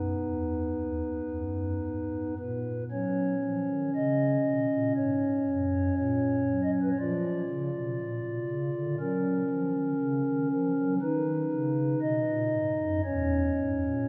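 A lone pipe organ on a stopped flute register opens this serene, majestic classical chorale, its soft, hollow tone sitting up front in a resonant church acoustic with a reverb tail of about 3.4 seconds. The piece moves at a slow 59 BPM in 4/4, played with a flexible rubato feel, and is cut from a longer work. Its harmony begins in F# major, passing through chords such as B, F# and a rootless A#, before shifting to B major at 11.0 seconds and closing on C#m/E. The mellow flute stops span from D#2 up to D#5, and the romantic voicing lends the chords a stately breadth. The organ is heard alone throughout the 14.1 seconds, carried by the reverberant space around it.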